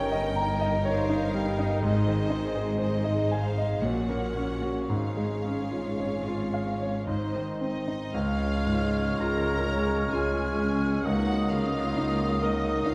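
A moderate concert-hall glow surrounds this passionate, lush romantic excerpt in a rubato 3/4, where a clear, up-front grand piano with deep bass carries the melody over rich bowed violins, dark sul tasto violas, a warm cello section and double basses, until a second, distant violin section takes up the melody from 7.6 seconds and at 8.1 seconds a pure silver flute, oboe, mellow bassoon and very quiet horn chords join, followed a moment later by a dark clarinet.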